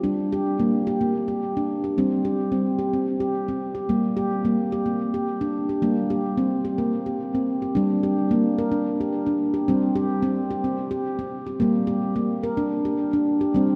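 Meditative and gentle, this brief world-music clip from a longer piece features a solo handpan with a ringing, full nitrided-steel tone, played with the fingertips and close-miked up front, moving through G minor pentatonic between G3 and Bb4 in a straight 7/8 at 218 BPM in eighths, its Gm and C5/G harmonies shifting over a new section at 7.8 seconds as a diffuse ambient delay trails each note into a dreamy cathedral reverb.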